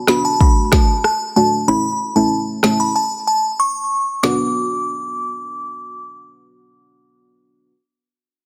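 A dense, heavily limited modern mix with light digital ambience frames this bouncy, sultry dancehall excerpt at 94 BPM in B minor, tuned to A4 = 436 Hz. Up front, a deep, nasal chord stab with sub-octave weight, a filter sweep, chorus and sidechain pumping moves from D to A and then Bm, while a glassy, crystalline FM synth bell carries the high melody through chorus and digital delay. An electronic afro-pop kit with a deep kick, woody snare and rim click drives the groove until 4.4 s, and a silent gap runs from 3.0 s to 4.2 s before the music returns on Bm.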